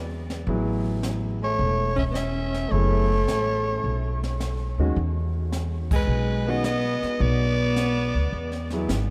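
This short excerpt sounds as if it were played in a vast, echoing space, with a long cathedral-like reverb hanging around a small jazz group swinging at 107 BPM in E major. The upright bass opens alone, woody, thumpy and up front, and the brush kit follows at 0.3 s with a high-tuned snare, a boomy kick, hi-hat and crash. A concert grand piano comes in at 0.5 s as accompaniment, intimate and natural with audible action noise, moving through chords such as Amaj7, F#m9, B13 and Emaj7. At 1.4 s a growling soprano saxophone takes the melody, raspy and breathy with scooped notes and light vibrato, while a clear, close-miked alto saxophone adds a second line beneath it. The band hits a shared accent at 5.8 s, and the mood stays warm and playful in a small-group swing and bop style.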